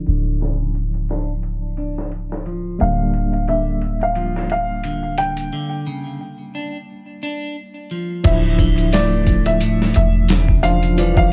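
A slow 88 BPM trip hop groove with a 16th-note swing opens this hypnotic, melancholic excerpt in D harmonic minor, as a dusty, overdriven, gritty and compressed sampler-style drum kit with a thumpy kick and a medium-tuned snare sits up front beside a deep, round 808-style bass, while a bright tine electric piano with tremolo and tape echo and a twangy clean electric guitar playing arpeggios through a filter sweep fill out the chords, a felt-muted upright piano with audible action noise and 12-bit sampler grit enters at 2.8 seconds to carry the melody, and a break at 5.5 seconds leads into a new section at 8.3 seconds.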